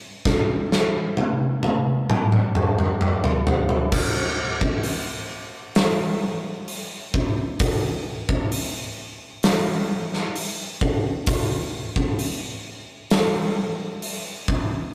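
Metal drum excerpt, heavy and hypnotic in a straight 4/4, where a big acoustic rock kit sits up front in a roomy, lightly reverberant rehearsal-space sound, opening with a drum fill that runs to 3.9 seconds, the kit drawing on crash, hi-hat, toms, a punchy kick and a medium-tuned snare under bright cymbals until it stops at 14.7 seconds.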